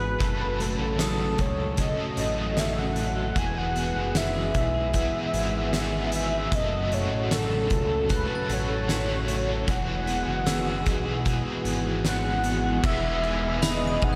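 Drenched in a lush hall reverb that gives a big arena sound, this dreamy, ethereal dream pop excerpt in E major drifts at 76 BPM, with a velvety synth lead carrying the melody over an airy unison pad, a clean picked electric guitar arpeggiating in the background, a fat, nasal analog bass, a dark, double-tracked overdriven guitar with tremolo, and a boomy, gritty low-tuned drum kit, while a sparkling glockenspiel with brass mallets appears briefly at 1.0 seconds and returns from 8.1 seconds as the chords move from F#m and Eadd9 to a closing Emaj7.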